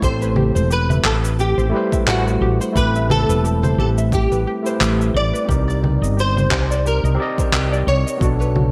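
Smooth and warm, this sunset chillout passage, cut from a longer piece, moves at an unhurried pace with a gentle swing on the sixteenths. An acoustic, fingerpicked flamenco guitar carries the melody through ensemble chorus and digital delay, while a barky, overdriven tine electric piano played through a combo amp supplies the accompaniment with its own delay. In the background, a soft, round pluck with a dark, detuned, wave-folded tone plays arpeggios through lush chorus and delay, and a woody fretless electric bass, growly and hollow-bodied with tube saturation, sits up front in the mix. Gritty, sampler-style electronic cabasa, congas and handclaps with gated reverb ride over a punchy, layered electronic kick that drops out at 8.4 seconds. The harmony shifts from Am9 to Cm9 at 5.5 seconds and to Bm9 at 8.2 seconds, framed by light reverb and a bright 1980s-style digital production.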